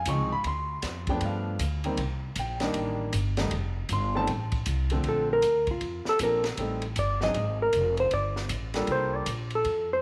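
Swinging along at 156 BPM in 4/4, this playful small-group jazz cut in Bb major opens with a clear, short-sustained baby grand piano comping over a woody, pizzicato upright bass and an open acoustic drum kit with dark cymbals, a high-tuned snare and a boomy kick, and then a clean, fingered hollow-body guitar with slapback echo steps up front for a dark-toned solo at 5.1 seconds, all set in a small room with moderate spring reverb.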